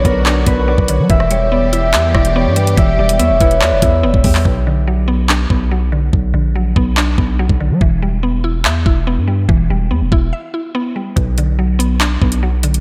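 This tense, cold drill excerpt opens with everything at once: a bright, ringing concert harp carries the melody in B minor, echoed by analog delay, while a breathy, flute-like synth lead with vibrato and chorus sits in the background as a second line. Beneath them, dark studio strings hold bowed chords with light vibrato and a soft attack, and a woody, round mallet-like synth pluck keeps up the accompaniment. At 143 BPM in a half-time feel, the drill kit is up front with a knocking kick, tape-warm hats, handclaps and rim clicks, joined by a deep, sine-like 808 bass whose long notes decay after a fast attack. The harmony moves between B minor and E minor, and by 4.4 seconds the strings and flute-like lead have dropped out. The harp carries on until 6.6 seconds, leaving the pluck, bass and drums through a break that runs to 11.2 seconds. A lush hall reverb with a 1.9-second tail soaks the whole mix, giving it a dreamy, chilly haze.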